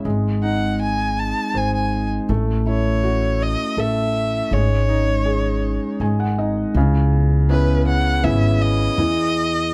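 In a straight 3/4 at 81 BPM, this melancholic, reflective acoustic folk-pop ballad in C# minor sets a soft, felt-muted upright piano, its action noise audible, beside ringing metallic vibraphone arpeggios from medium hard mallets, while an up-front woody pizzicato upright bass enters at 0.1 seconds and a single focused bowed violin with vibrato carries the melody from 0.4 seconds, all captured by close, detailed microphones in a nearly dry sound.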